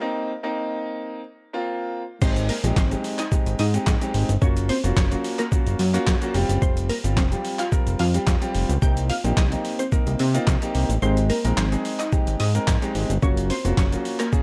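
A straight 4/4 groove at 109 BPM drives this summery, euphoric dance-pop clip in Ab major, which opens with a warm concert grand piano alone as a short build-up and break before the drop lands at 2.2 seconds, bringing in a gritty, pitched-down sampler-style drum kit with a thumpy kick, handclaps, shaker and crash, overdriven and placed up front, along with a fat, detuned analog bass and a glassy wavetable pluck carrying the melody through chorus and tape echo. The bass, piano and pluck all pump against the sidechain, and the kick drops out briefly from 11.0 to 12.1 seconds over a progression moving through Cm7, Abmaj7, Gbmaj7 and Fsus2. The dry, high-pass-filtered mix has a raw hardware grit, with the crystalline pluck shimmering above the thick low end.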